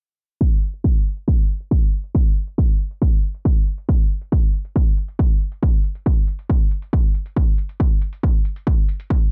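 A dry, low-pass-filtered recording of driving, industrial and relentless peak-time techno in a straight 4/4, cut from a longer piece, where a heavy, layered electronic kick drum sits up front from 0.4 s to 9.2 s as a filter sweep runs over the drums, while a tape-saturated analog electronic hi-hat, dulled by its own low-pass filter and pulsing with sidechain pumping, stays in the background, both parts carrying the character of a small room.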